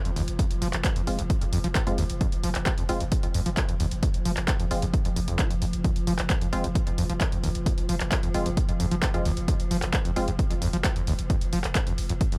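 A growling, buzzy 808-style bass opens this relentless, industrial slice of driving peak-time techno at 132 BPM in F minor, carrying overdrive, a low-pass filter and sidechain pumping. It is joined at once by a squelchy, gritty acid bass riff coated in lush chorus and digital delay, an eerie metallic FM drone hovering in the background, and a tape-warm analog drum machine supplying handclaps and hi-hat, with a punchy electronic kick sitting up front from 0.4 seconds. Crisp, wave-folded wavetable chord stabs with digital delay enter at 1.1 seconds and stop at 10.3 seconds, all within a dry mix cut from a longer piece.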